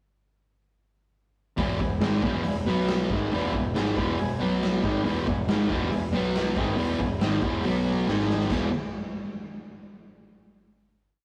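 A rough rehearsal-room recording with stone-room reverb and faint mains hum carries this raw, rowdy garage rock piece, where an up-front, double-tracked fuzz guitar plays a power-chord riff, an overdriven fuzz bass doubles it in the background with driving eighth notes, a punchy, gritty drum kit holds a big rock groove, and a very quiet, buzzy combo organ plays triad chords in eighths, adding fills at 3.8 and 7.6 seconds before a drum fill leads into the final chord at 8.5 seconds.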